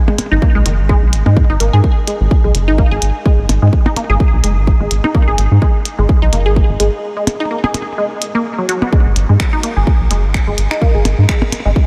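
A steady pulse with a gentle swing on the sixteenths drives this quirky, clinical slice of minimal techno, cut from a longer piece. A punchy, layered electronic kick sits up front beside a rubbery, hollow square-wave bass that bounces low and dark with sidechain pumping. A juicy, squelchy blip pluck carries the riff with a resonant filter snap, short decay, ring-modulated bite, phaser and delay, and it pumps in the same way as the bass. Around them, a minimal click kit of finger snaps and clicky hi-hats has a tape-warm, small-room character, while delayed percussion blips add electronic detail. A break between 7.0 and 8.9 seconds interrupts the groove, and light reverb gives the whole track a modest sense of space.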